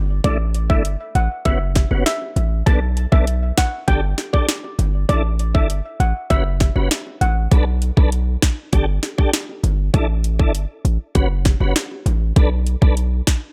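A digital ambience frames this bouncy, sultry dancehall cut at 99 BPM in B minor, where an up-front, overdriven electronic kit with a sharp snare and metallic hats sits over a punchy, heavy 808-style bass. A dark, shimmering steel pan carries the melody through a digital delay until 7.3 seconds, while a smooth tonewheel organ with chorus vibrato and fast rotary speaker holds down the suspended and minor-seventh chords. Very quiet, high-tuned vintage bongos add a faint acoustic edge to this excerpt from a longer piece.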